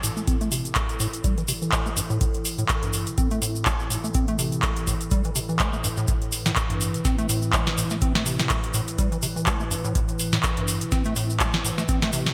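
A swung 4/4 groove drives this gritty, trippy acid house excerpt: a deep, tape-warmed electronic kick arrives at 0.3 s beneath an up-front, booming analog drum machine with handclaps, metallic hats and a tonal snare in gated reverb, while a grainy, close tube shaker adds texture. A squelchy, resonant square-wave acid bass with overdrive, delay and sidechain pumping plays a riff under a filter sweep that runs the full 12.3 seconds. A dark, warbling lo-fi pad sustains nostalgic chords with chorus and pumping, all set in a bright 1980s-style digital production with light reverb.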